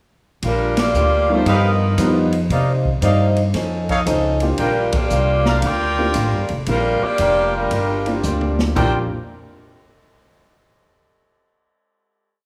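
This brassy big band swing piece in Bb major opens at 0.4 s with upright bass, drum kit and picked acoustic guitar, and the saxophone section follows almost at once. At 115 BPM, the woody pizzicato bass walks up front. The drums keep a ride cymbal pattern with dark cymbals and a boomy kick, and the boxy guitar strums four to the bar in the background with audible finger squeak. The bright, smooth-topped saxophone section carries a motif-based melody in call phrases, harmonised in four-part block voicing over a turnaround of Bb6, G7alt, Cm11 and F7b13. From 1.3 s an intimate baby grand piano, its action noise audible, comps in syncopated rootless voicings, and at 1.5 s the trumpet section adds warm, soft-attack stabs with vibrato in drop2 voicings. Band accents punctuate the tune, a drum fill arrives at 8.2 s ahead of a final chord, and a moderate large studio reverb surrounds the ensemble.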